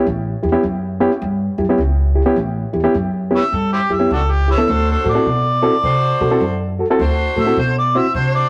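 A mellow, overdriven harmonica takes the solo spot at 3.4 seconds, jazz-inflected and full of tongue slaps, scooped notes and a soft attack that gives this swaggering, gritty electric blues shuffle its voice. Underneath, a reedy, clean electric piano with spring reverb supplies the accompaniment from the start, alongside a woody pizzicato upright bass strung with steel. The groove moves at 104 BPM in 4/4 with a swung eighth-note feel, tuned slightly high to A4 = 444 Hz, and the harmony shifts from A7 to D7 at 4.7 seconds. At that same moment a tight, close-miked saxophone section drops in with quiet jazz stabs. The short cut from a longer piece has a rough rehearsal-room sound, with light reverb and a warm saturation over the whole mix.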